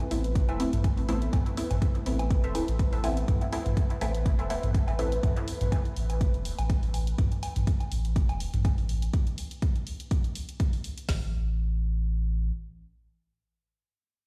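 Heard through the stone-room reverb of a big sound system in a bare space, this short, nocturnal, cavernous dub techno cut from a longer piece moves at 123 BPM in A minor with a light 16th-note swing, as an up-front deep house kit with a deep kick, woody snare and dark hats plays alongside a layered electronic hi-hat, a round, soft sub bass with tube saturation and sidechain pumping that holds until 12.5 seconds, overdriven analog woodblock and toms with dub echo, a muted, detuned sawtooth chord stab with phaser, a warbling lo-fi pluck, and a moody, slow-attack ambient pad sustaining an Amadd9 chord in the background, before the harmony drops away at 11.1 seconds.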